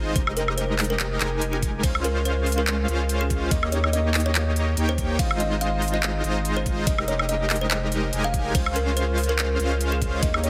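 Future bass at 143 BPM in a half-time feel with a light 16th-note swing, this euphoric, bright excerpt cycles through Fm11, Dbmaj7, Eb7 and Ab6, with a woody, ringing kalimba melody carrying dub echo over a smooth, detuned supersaw riff and a thick, saturated sine sub bass, all three pumping under sidechain from 0.0 seconds. At 0.2 seconds a knocking, layered electronic kick and a pop drum kit of crisp hi-hats, handclaps, ride cymbal and woodblock enter, both set in studio reverb. The mix sits in light digital ambience with a heavily compressed, radio-like sheen, the sub bass and supersaw pushed up front.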